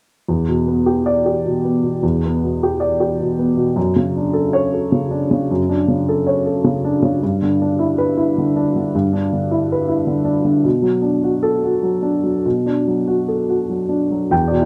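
In a rubato 3/4 at 104 BPM, this brief excerpt of neoclassical minimalist piano sits in B minor, tuned slightly low to A4 = 437 Hz, with an intimate, reflective mood. A solo upright piano, woody, up front and a touch detuned, plays from 0.3 to 14.7 seconds across a range of E2 to G5, moving through Em7, Dmaj7/F#, G6 and Bm7. The sound is a dry, close 1970s-style studio recording with studio reverb.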